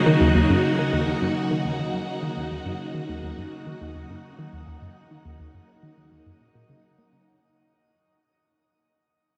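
Hypnotic and mysterious, this short fragment of ambient, sequencer-driven space music sets a swirling, phased string machine holding sustained chords up front over a round, detuned analog pluck riff with tape echo and a bubbling, resonant stepped-filter texture, all sinking into a dark shimmer reverb as the section fades out on an Ebm7 chord with a filter sweep running through the arpeggio sound.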